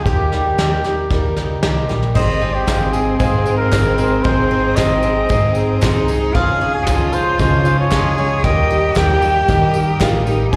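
A mellow, vintage-toned trumpet carries the melody of this uplifting, nostalgic indie folk piece at 115 BPM in Ab major, opening over a shimmering, octave-doubled twelve-string acoustic guitar and a silvery, fingerpicked steel-string zither, all three touched with slapback echo, while a round, dark dub bass and a distant brush drum kit join almost at once. From 2.1 seconds the arrangement builds: a smooth bowed cello with vibrato adds a second line, then a woody upright piano, a floating chamber string section holding soft sustained chords, hollow group handclaps and a jingly tambourine fill in behind. It sounds like a live gig heard through the venue's PA with recital hall reverb, and it is cut from a longer piece.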